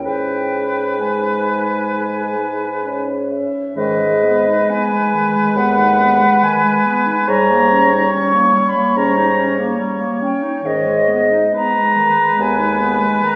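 Bathed in a wet recital-hall reverb, this melancholic, yearning fragment of a slow, rubato romantic movement for wind quintet sets an airy, straight-toned flute melody up front over an oboe second line with light vibrato, soft-attacked French horn and vintage-toned clarinet accompaniment, and a mellow bassoon bass, while the harmony shifts at 7.3 seconds and returns home at 10.6 seconds.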